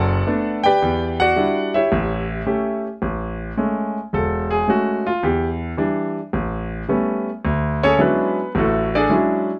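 Swung eighths in four give this relaxed, playful solo jazz passage its lilt, as a concert grand piano with deep bass and short, polished sustain sits up front in light reverb, moving through Bm7, Em7 and A7 before arriving on Amaj7 at 3.0 s and reaching Dmaj9#11 at 7.4 s.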